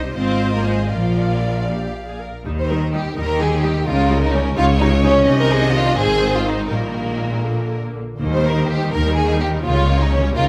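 Graceful and lively, this brief excerpt from a quick classical-period movement for string orchestra moves in a rubato 6/8, with a lush violin section carrying the melody over a second violin line that sits up front with a focused, smooth top, while a close, even viola section fills in softly behind, a clear but distant cello section joins at 0.2 seconds, and a bright, intense double bass section anchors the bass, all captured with detailed microphones in a light reverb.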